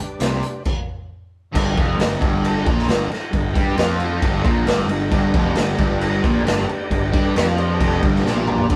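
A stone-room live sound with moderate reverb frames this gritty, raunchy blues rock and southern rock excerpt in G mixolydian at 134 BPM: an up-front, double-tracked overdriven guitar riff with phaser leads over growly, punchy fuzz bass and a boomy, saturated garage drum kit with dark cymbals, while a thick tonewheel organ with slow rotary and chorus vibrato holds sustained chords in the background, dropping out just before a band stop at 0.7 seconds and returning at 5.1 seconds before a drum fill at 8.3 seconds.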